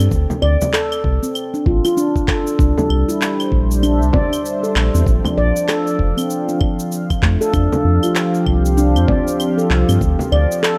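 Organic downtempo with an earthy, hypnotic mood, this short excerpt from a longer piece moves at an easy pace with a swung sixteenth-note feel. A ringing, meditative handpan plays arpeggios up front, its nitrided-steel tones struck with soft fingertips and trailed by a digital delay, while a round, dark analog bass sits close beneath it. The rhythm bed pairs a gritty, thumpy electronic kick drum, compressed and tape-coloured, with tape-warm electronic cabasa, claves and handclaps, and a deep, large frame drum played with soft hands. At 2.6 seconds a smooth, detuned analog pad enters with sustained chords, its chorus, sidechain pumping and moving notch giving it a gently breathing motion. The harmony drifts from D minor through Cadd9, a rootless Bb and Fsus2 before returning to D minor, all set in light reverb and digital ambience.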